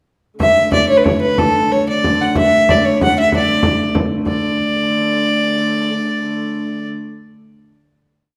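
In a straight 6/8 at 126 BPM that speeds up, this festive, ancient-sounding medieval dance sets a reedy, gut-string fiddle close and up front with an ornamented modal melody over a dark, woody, wheel-bowed hurdy-gurdy drone heard at a distance, while a frame drum played with soft hands keeps an evenly spread pattern until 4.4 s, just after the piece reaches its final chord at 4.3 s, the whole performance ringing in a wet recital-hall reverb.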